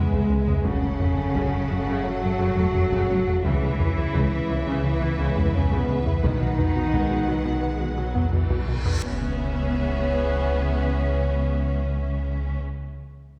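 Solo taiko drums, played with heavy sticks and sounding vintage and band-limited in the background, drive a straight 4/4 pulse at 86 BPM in this futuristic, relentless hybrid orchestral and electronic film score in C# minor, cut from a longer piece. A punchy, funky analog bass riff, wave-folded and shaped by a filter pluck, runs until 9.0 s over a deep sine sub bass with octave, woody bowed double basses and a lush cello section. Violins carry a focused, vibrato-rich melody with a smooth top, supported by a second violin line and rich violas further back. Dark, distant French horns and very quiet trombones hold sustained chords as the harmony moves from C#m7 through F#m and B before returning to C#m7. An electronic reverse cymbal enters at 8.3 s and leads into an impact at 9.0 s, while the strings, brass and sub bass carry on to the close. Wet scoring stage reverb places the whole ensemble further back in the room.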